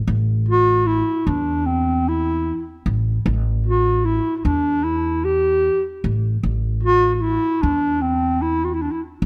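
An upright bass opens this short cut from a longer Turkish makam ensemble piece at 0.1 s, its plucked pizzicato notes woody, warm and thumpy on steel strings, sitting low between A1 and E2. At 0.5 s a breathy clarinet enters as the solo melody voice, moving between C4 and G4 with a soft attack, vibrato and a whispered subtone that lends it a jazz-inflected, intimate character. The mood is hypnotic and soulful, unfolding at a steady 76 BPM in 4/4 with a straight feel, tuned to A4 = 436 Hz. Both instruments sit up front, with the mellow clarinet slightly more present than the bass. Close, detailed microphones and a light reverb keep the sound immediate and clear until the clarinet ends at 9.0 s and the bass at 9.3 s.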